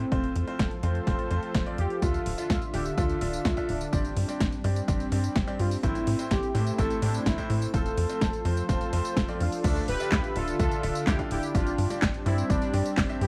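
An italo disco excerpt at 126 BPM in straight 4/4 opens with everything arriving together: a bold, fat analog synth brass carrying the melody, a thick detuned unison pad holding sustained chords, bright grand piano stabs and a tight sawtooth sequencer bass with a quick filter pluck. The mood is nostalgic and melodramatic, moving through F, Dmadd9, Gsus4 and Am before the second section at 9.6 seconds returns to Dmadd9 and Gsus4. The brass melody has a filter sweep, chorus, tape echo and a cassette-tape character, while the pad swells in slowly with chorus and a grainy 12-bit sampler texture. A house drum kit with a punchy snare, warm hats, handclaps, tambourine and crash sits in studio reverb, joined by a layered, tape-warm electronic kick from 0.1 seconds. The piano is brilliant and intimate, its action noise audible, and the whole mix has the dry, close sound of a 1970s studio with vinyl crackle.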